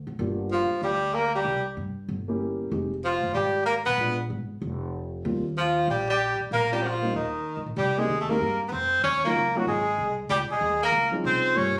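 A swinging 4/4 pulse at 190 BPM drives this relaxed, playful slice of small-group swing and bop in Eb major, moving to Ab major at 7.8 s, with a plucked, woody upright bass holding down the low end from the very start. A dark concert grand piano comps with vintage character and audible action noise, while a mellow, distant trumpet carries the melody with light vibrato and scooped notes. An edgy, punchy tenor saxophone adds a forceful second line up front, all set in a moderate studio reverb with a roomy, phone-in-the-room sound, cut from a longer piece.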